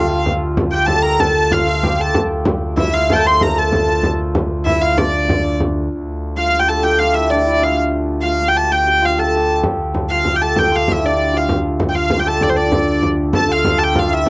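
A clear, smooth hurdy-gurdy opens this mysterious, driving medieval dance, sitting up front with the melody in a high register, joined at once by a mellow, shimmering hammered dulcimer carrying a second line below it and a thick, romantically voiced pipe organ holding a low drone on D. A deep, large-sounding frame drum enters at 0.3 seconds, giving the 6/8 pulse its push at about 128 beats per minute in dotted quarters, in D minor with tuning a touch below standard pitch. The drum drops out at 5.7 seconds as the piece moves into a new section, leaving the wheel-bowed hurdy-gurdy, the ringing dulcimer and the organ's foundation stops to carry the tune, before it returns at 9.6 seconds. The tempo gradually speeds up throughout, adding to the sense of momentum. The sound is dry and close, in the manner of a 1970s studio recording with light reverb, and this is a short cut from a longer piece.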